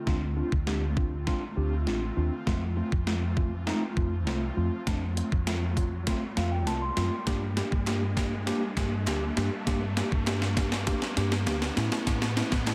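Driving and energetic, this dance-pop excerpt from a longer piece is one continuous build-up, with a drum fill running throughout and a riser climbing in the background from 0.4 seconds. A clean 12-bit digital drum machine sits up front with a thumpy kick, a medium-tuned snare and hi-hat, its sampler-style sound tape-toned and re-recorded in a large room. Beneath it, a vintage muted fingered electric bass gives a dark, round, amped tone, while a mellow tine electric piano heard through its built-in speakers provides accompaniment and adds a short fill from 6.1 to 7.3 seconds. An airy, breathy pad with a slow attack, detuned sawtooth layers and a noise layer holds soft, warbling chords in the background, treated with chorus, and the pad, bass and electric piano all pump with sidechain compression. A very quiet, crisp group handclap joins at 7.9 seconds, the harmony moves from Dm7 to F, Gm and A, and light reverb rounds out the mix.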